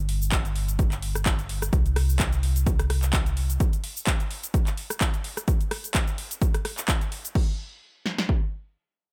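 Piano house at 128 BPM in 4/4, with a light swing on the sixteenths, this feel-good, joyful passage is cut from a longer piece and opens straight into a drop that runs until 7.4 seconds. An organ-like FM bass sits up front, hollow and dark with a fast, percussive attack that decays, pumping with sidechain compression from the start and dropping out at 3.6 seconds. A punchy analog drum machine supplies the kick and snare, re-recorded in a small room and placed forward in the mix, carrying on to 8.4 seconds. Beneath it, a layered, produced garage kit adds crash cymbal, handclaps, rim clicks, shaker and metallic hi-hats at a lower level until 7.5 seconds. The sound is dry and close, with little reverb, and a brief second section follows the drop at 7.4 seconds.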